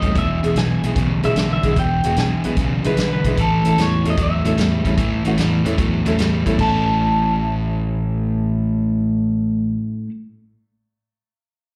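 An up-front, overdriven semi-hollow guitar riff opens this gritty, soulful electric blues shuffle in A major at 149 BPM, heard live through a club PA with light reverb, joined from the start by a slightly broken-up, lo-fi lead guitar from a small old amp carrying the melody with slapback echo, a woody, open upright piano in accompaniment, a round fingered electric bass, and a distant, roomy soul drum kit with dark cymbals that drops out at 6.7 seconds, before the semi-hollow guitar continues alone from 9.8 to 10.1 seconds as this fragment of a longer piece ends.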